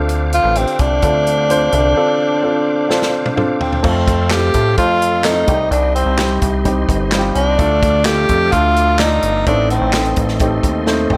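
A woody upright piano, a glossy, nasal chorused synth bass and a reedy tonewheel organ with fast rotary speaker and chorus vibrato in the background open this dramatic, earnest piano-driven pop excerpt at 128 BPM in 4/4, soon joined by a punchy, natural country drum kit with handclaps and crash cymbal, and at 0.3 s by a breathy, bright tenor saxophone carrying the melody up front with light vibrato, in a moderate studio reverb, with drum fills at 2.9 s and 10.9 s as the harmony moves through Dm7, F, Cm, Dm and Adim.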